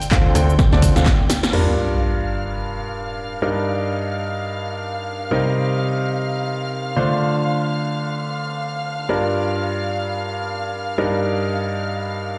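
A clear, up-front grand piano riff with audible action noise and tape echo drives this energetic, bittersweet piano-house excerpt over dark, sul tasto strings pumping under sidechain, while a punchy overdriven kick, an analog drum machine with handclaps, shaker and crash, and a hollow, organ-like FM bass build into a drum fill before dropping away by 1.6 seconds, as an electronic sub drop lands at 1.5 seconds and the piano and strings carry on in a large, reverberant room.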